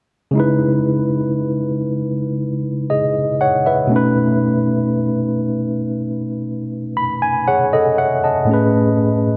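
A lush hall reverb of moderate size surrounds a lone tine electric piano that sits up front, its worn, slightly out-of-tune tone lightly overdriven and heard as if through built-in speakers. This is a short R&B passage cut from a longer piece, moving at a slow 59 BPM in 4/4 with a straight feel in C# minor. The mood is longing and sensual as the piano, playing solo across a range from A2 to B5, moves through C#m9, then B9 at 3.9 seconds. A fill on the electric piano from 6.5 to 8.5 seconds leads into a closing Amaj7. The roomy reverb tail lingers around the piano's frayed character, giving the intimate performance a sense of space.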